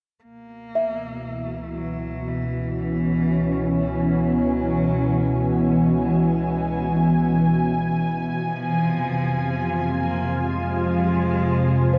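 Set to a slow, straight 4/4 pulse at 59 BPM, this reflective, spacious ambient piece in C# dorian is cut from a longer work and sits in a vast, echoing cathedral space. A round sine sub bass and a dark, bowed solo cello both fade in from 0.2 seconds, the cello carrying a low, expressive melody with vibrato, portamento and a smooth top, bathed in shimmer reverb. At 0.8 seconds a small celesta enters with bell-like, delicate arpeggios from soft felt hammers, its airy tone trailed by delay and shimmer. From 1.1 seconds an evolving wavetable pad sits up front with full-bodied, morphing unison chords, slow in attack and long in release, thickened by ensemble chorus and reverb while a filter sweep gradually reshapes it. The harmony rests on C#m7 before moving to Fm at 8.4 seconds.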